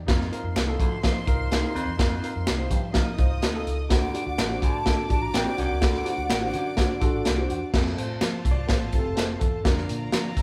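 Uptempo 1960s-style soul at 125 BPM, urgent and passionate and cut from a longer piece: a crunchy, saturated breakbeat drum kit sits up front over a round, punchy muted electric bass, warm, present baby grand piano accompaniment and a rich, softly bowed violin section, while a raspy baritone saxophone riffs from a distance in the background, very quiet finger snaps sound from a small room, an airy, mellow flute carries the melody from 3.9 to 7.5 s, and the piano takes a solo from 7.7 s to the end, with the band sharing one reverberant studio room.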